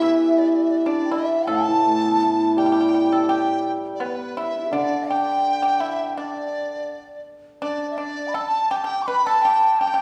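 Set back in a wet recital hall with studio ambience, this graceful, pastoral fragment of Chinese chamber music unfolds in a loose, rubato two-beat feel. An up-front, hollow large dizi carries the melody with an airy, mellow, buzzing-membrane tone and vibrato, while a breathy, reedy xiao sits in the background with a straight, tongued line and a dry, percussive pipa adds a further second line. A shimmering, ringing hammered dulcimer stands forward as accompaniment until 6.9 s, shortly before the music moves into a new section at 7.6 s.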